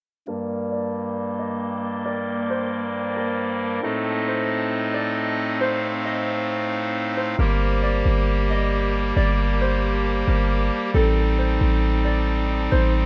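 A half-time 4/4 pulse at 135 BPM in G minor carries this ethereal, hazy hip hop excerpt. A ringing acoustic Celtic harp melody, softened by a low-pass filter and delay, floats over hollow, chiffy clarinet-stop chamber organ chords moving between Gmadd9 and Adim, while an airy, breathy wind-like tuned noise texture drifts in the background from 1.0 s and a filter sweep colours the opening 7.4 seconds, until a deep, boomy 808-style bass arrives up front at 7.4 s in a rough home demo mix with light studio reverb.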